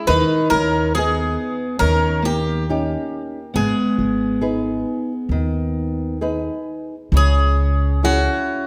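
A bright, metallic Greek bouzouki carries the melody from the opening moment, joined at once by a shimmering, octave-doubled twelve-string acoustic guitar fingerpicking a second line with audible finger squeak, in this excerpt from a longing, mournful fado-style ballad in G# harmonic minor at a rubato 69 BPM. A small, fingerpicked nylon-string guitar sits up front as accompaniment, while a woody, thumpy pizzicato upright bass anchors the low end until 8.3 seconds. The harmony moves from G#m over D# through D#7 and back to G#m before shifting to C#m at 7.1 seconds, all set in a moderate recital hall reverb.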